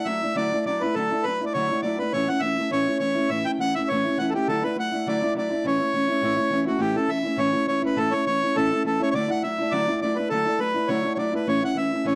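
A reedy, dry-tuned accordion carries the melody from the first moment, touched by a slapback echo, over a dark, boxy parlour guitar fingerpicking the accompaniment, both parts sitting close and up front. This lively, rollicking Celtic folk tune has a lightly swung lilt and moves between Dadd9 and A chords, playing its main strain once and then again from 6.8 seconds. The sound is that of an intimate 1970s-style studio with only a light touch of reverb, and the passage is cut from a longer piece.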